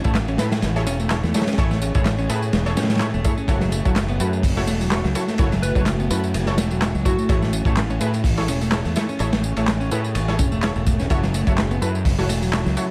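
This cut from a longer funky, swaggering breakbeat track at 126 BPM in swung 4/4 rides a gritty, saturated, up-front crunchy breakbeat kit with dark cymbals and a punchy kick, an overdriven fuzz fingered electric bass, analog electronic tambourine and handclaps, a clean compressed electric guitar riff in spring reverb, bright orchestra-hit-like synth stabs with tape echo, and a very quiet, moody ambient pad holding Amaj7 and F#m7 chords, while a catchy plucky unison lead with a telephone sound and vibrato cuts in from 5.6 to 7.3 seconds.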